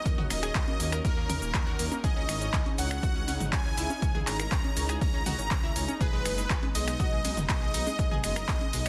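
Progressive house at 121 BPM in G# minor, this short excerpt of a longer piece feels bittersweet and driving, moving from D#m7 through C#madd9 to G#m. A smooth, detuned supersaw carries the melody with sidechain pumping and digital delay, shadowed very quietly by an airy, dreamy lead with soft attack, chorus and vibrato. Beneath them, a round analog pluck spins arpeggios through lush chorus and delay, while a dark chamber string section holds sustained, bowed chords in the background with light vibrato. A deep, rumbling detuned saw bass pumps with sidechain from 0.1 s. The punchy, overdriven electronic kick sits up front alongside a deep house kit of cabasa, finger snaps, handclaps, hi-hat and ride cymbal, with a gritty sampler-style kit adding faint hi-hat and fat snare, and tape-toned electronic toms and congas tucked into a small room behind them. The master is dense and heavily limited, with a digital ambience around the parts.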